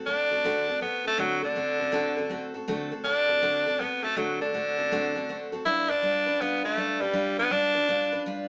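A swing feel on the eighth notes carries this short rock excerpt in 4/4, giving it a retro, rowdy mood. Up front, a raspy tenor saxophone takes the solo melody in a gritty, punchy pop style, its forceful, edgy tone shaded with light vibrato. Underneath, a picked steel-string acoustic guitar provides full-bodied dreadnought accompaniment, sitting well behind the horn in the mix. The harmony rests on D7 before moving to G7 at 5.7 seconds. A moderate club reverb gives the performance a lively, close room feel through to its end at 8.5 seconds.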